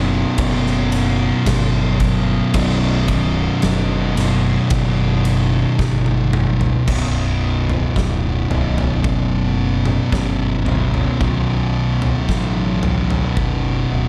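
Two thick, fuzz-distorted electric guitars, one dark and up front and the other warm, open this ominous, heavy stoner and doom metal fragment on a low picked riff over a growling, overdriven fingered bass, with a big acoustic rock drum kit joining at 0.4 seconds with punchy kick, medium-tuned snare, toms, and bright crash and ride cymbals in a stone-walled room, then playing a fill from 5.8 seconds into a new section at 6.9 seconds, all within a dark, lightly reverberant small-room mix.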